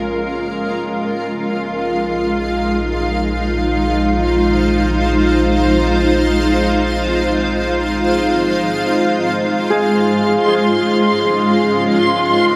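Reflective and spacious, this ambient excerpt drifts on a cloudy, evolving granular pad of sustained chords held up front, while a round, deep analog bass fades in beneath it and stops at 9.1 seconds, a mellow, thumb-plucked Celtic harp rings out arpeggios through diffuse delay from 9.7 seconds, and a reversed, bright backwards texture swells in at 10.0 seconds, the whole mix steeped in a huge, wet reverb.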